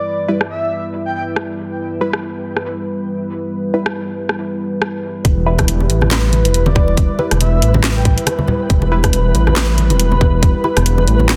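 Deep dubstep at 139 BPM in E minor with a half-time, swung feel, this excerpt from a longer piece sounds cavernous and dark. A moody analog pad with a sub octave holds sustained chords throughout, while a muted, phased dub chord stab with echo sits in the background. A breathy, flute-like synth lead with tremolo, chorus and dub echo offers brief melodic phrases at the opening and again around 6.3 seconds. A garage drum kit of handclaps, filtered hi-hats, rim clicks and a cracking snare enters at 0.4 seconds. At 5.2 seconds the drop arrives, bringing a deep, rumbling detuned saw bass and a tight, up-front electronic kick, with thin-skinned congas tucked close and dry behind them. A flickering, grainy granular texture joins shortly after, and the whole is densely limited with light reverb.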